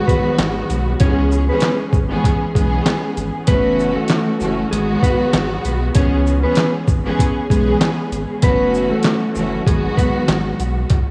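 A gritty, compressed boom-bap drum kit sits up front, its pitched-down, tape-toned kick thumping under a medium-tuned snare, handclaps, hi-hat and shaker at 97 BPM with a 16th-note swing, giving this short cut from a longer hip-hop piece a tough feel in C# minor. A bowed studio string section, also up front, carries smooth, expressive vibrato and portamento over G#m7, C#m7 and F#m7 chords, while a dark, clean, fingered electric guitar plays the melody from 0.0 to 10.3 seconds. A deep, thick, saturated sub bass enters at 0.4 seconds, and analog delay on the drums, strings and guitar plus light reverb and small room ambience leave the mix echo-heavy.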